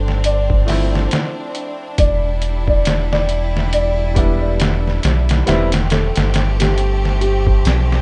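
Brooding and smoky, this trip hop excerpt moves at 69 BPM in E phrygian with a swung sixteenth-note feel, as a felt-muted upright piano carries a soft, intimate melody with audible action noise through dub echo and plate reverb, over a bright, lush violin section holding bowed chords with vibrato. A round, deep analog bass sits up front beside a compressed, pitched-down sampler-style drum kit whose thumpy kick, medium-tuned snare and hi-hat are overdriven and muffled. From 0.7 to 5.7 seconds a clear, woody second upright piano adds accompaniment colored by harmonic tremolo, 12-bit sampler grit and tape echo, all over Dm7, Em7 and Am9/E chords in a rough, dry home-demo mix.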